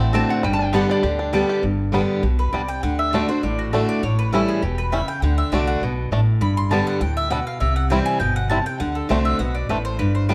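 A short burst of lap resonator guitar, played with a steel bar and fingerpicks, opens this joyful, virtuosic bluegrass excerpt, its metallic, nasal slide lead carrying a slapback echo until 1.5 s. Underneath, a bright, up-front picked steel-string acoustic guitar picks out the accompaniment, a twangy, percussive banjo rolls out arpeggios, and a woody, thumpy upright bass with gut strings is plucked low. At 1.6 s the mandolin takes the solo, its double strings picked in stabs that also carry a slapback echo. The harmony moves briskly from G through D, A7, C and D7 in a straight four-beat feel. Close, detailed microphones and light reverb give the acoustic band an intimate, lively sound.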